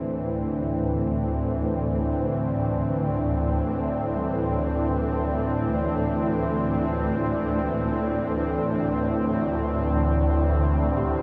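A swarming, detuned drone dominates this unsettling dark ambient excerpt, its warbling, granular low tones carrying a vintage phaser shimmer and their own reverb, sitting up front in free time. Above it, a bright, airy sawtooth pad holds sustained chords on Dsus2 with a resonant filter swell and chorus, while very quiet gamelan-type bossed gongs play bronze, beating arpeggios far back in the mix. The whole dreamy, ominous mix is soaked in a huge ambient reverb with a 7.0-second tail, and all three parts sound throughout the 11.2 seconds.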